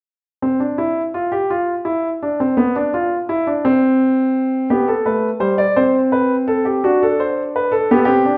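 Joyful and stately, this brief excerpt of a baroque-style three-part fugue in 6/8 moves at 56 BPM on solo grand piano, its warm, polished, up-front tone ringing with long sustain through a moderate recital-hall reverb from 0.4 to 8.4 seconds, ranging from G3 to D5 as an initial N.C. passage gives way to G, C5 and D7 harmony.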